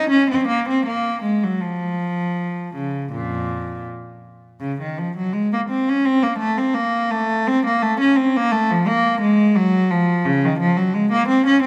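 This is a classical, baroque-style suite movement for unaccompanied cello, heard as a brief cut from a longer piece. The mood is flowing and introspective, with a rubato feel in 4/4 moving at roughly 78-87 BPM in Bb minor, tuned to A4 = 442 Hz. A single bowed cello plays alone for the full 11.7 seconds, ranging from F2 up to Eb4. Its period-style, gut-string tone sounds rich and reedy, and it sits close and up front. A moderate scoring-stage reverb with a 2.0-second decay surrounds the instrument with a sense of space.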